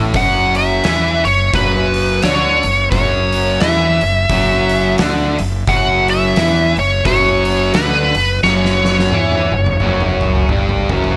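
Sludgy and brooding, this swung stoner and doom metal fragment puts a double-tracked fuzz guitar riff up front on an F#5 chord, thickened by a tube-saturated fingered electric bass and a gritty, oversized low-tuned drum kit with punchy kick, fat snare, hi-hat and toms in a bright stone room, while a compressed fuzz lead guitar carries the melody through wah and digital delay from 0.2 seconds, the drums rolling into a fill at 8.4 seconds and the lead stopping at 10.5 seconds in a mostly dry mix.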